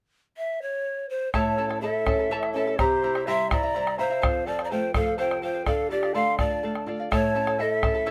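Breathy cane pan pipes carry the melody up front from 0.4 s in this melancholic, wistful Andean folk piece, cut from a longer performance, at 83 BPM in a straight 6/8; at 1.3 s a mellow, slightly unsteady wooden quena joins with a second line, alongside a shimmering fingerpicked charango, a boxy flamenco guitar with audible finger squeak, and a round, close, dry bombo, all set in light reverb over chords moving from A through C7, F and Dm back to A.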